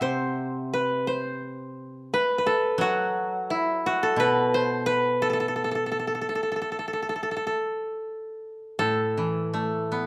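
Rubato, with uneven beats in four, this short cut from a longer piece of Japanese traditional chamber music feels still and solitary, as a warm, woody koto carries the melody up front while a second, brighter koto plays a low accompaniment beneath it, both plucked with fingerpicks and set in a moderate recital-hall reverb within a dark production, shifting into a new section at 8.4 seconds.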